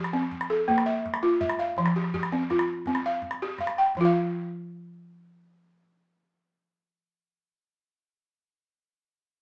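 Joyful and warm, this short cut from a longer piece of West African traditional string and xylophone music moves at 110 BPM in a straight 12/8, with an up-front balafon, woody and buzzing under soft rubber mallets, spinning arpeggios from 0.0 to 7.6 seconds over chords of F, Bb5, F5 and C5, while a small acoustic calabash adds quieter percussion until 4.1 seconds, the band heard live in one room with moderate studio reverb and a small speaker sound.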